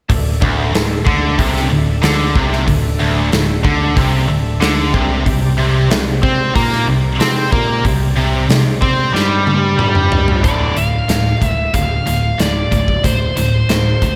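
A big arena sound with lush hall reverb frames this aggressive, driving hard rock excerpt at 93 BPM in 4/4, moving from D5 to C5 and then to Dm. Up front, a punchy acoustic drum kit in a pumping room drives the groove, while a growly, amped picked bass plays the bass line. In the background, three overdriven guitars play the riff: one biting and double-tracked, one crunchy, and one heavy and high-gain, the last two with slapback echo. A very quiet, gritty tonewheel organ with key click and slow rotary holds sustained chords until 10.4 s, and after a drum fill from 9.1 s, a bluesy, distorted lead guitar carries the melody up front with slapback echo.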